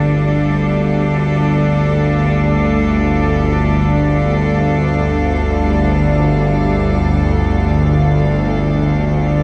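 Ominous and desolate, this free-time dark ambient drone, cut from a longer piece and tuned to A4 = 442 Hz, rests on a Gsus2 chord, where a tense, string-like bowed drone with vibrato sits up front in the low register beside a bright, earthy cello section holding sustained chords, while a barely audible, mellow grand piano arpeggiates and an icy, crystalline glass pad with chorus hovers in the background, all bathed in a cavernous cathedral reverb with a dark, warm production over its 9.4 seconds.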